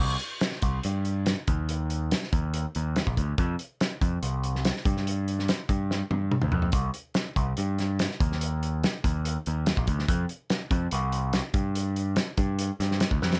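Math rock and midwest emo at 143 BPM in 4/4 with an intricate, restless mood, cut from a longer piece: a growling, overdriven picked electric bass sits up front and bright from the start, joined at 0.2 seconds by a loose indie drum kit in a small room with a fat snare, tight kick, hi-hat and toms, breaking into drum fills at 5.9 seconds and again at 13.2 seconds under light reverb.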